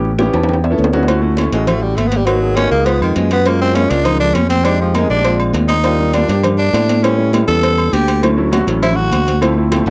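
A growling, raspy tenor saxophone takes an up-front jazz solo from 1.1 seconds in this sophisticated, danceable Afro-Cuban jazz excerpt, riding a chord progression that moves from A9 through Dmaj7, G#m7 and Fm9 before circling back. Beneath it, a warm grand piano and a bright, growly fingered electric bass carry the harmony, with the piano and drums sharing a fill at the opening. Round, low-tuned bongos with cowbell, distant ringing congas and metal-shelled timbales with agogo bells in the background fill out the percussion, all in light reverb with a home-cassette character.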